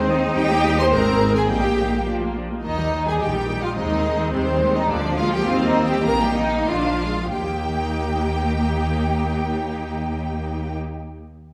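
The second violins stand out most in this graceful, cheerful classical-period movement for string orchestra, their lush, up-front line sounding soft in attack and smooth on top as it sits beneath the melody. Above them the first violins carry the tune in a focused, vibrato-rich voice, while the violas add accompaniment from a distance with expressive portamento. The cellos sit in the background with a clear, focused bass, and the double basses, up front, anchor the low end with an even, smooth tone. Set in a lively 2/4 with a straight feel, the passage eases its pace between 4.3 and 7.3 seconds before a new section begins at 7.3 seconds, as the harmony settles back home. A reverberant recital-hall acoustic surrounds the ensemble in this brief extract cut from a longer piece.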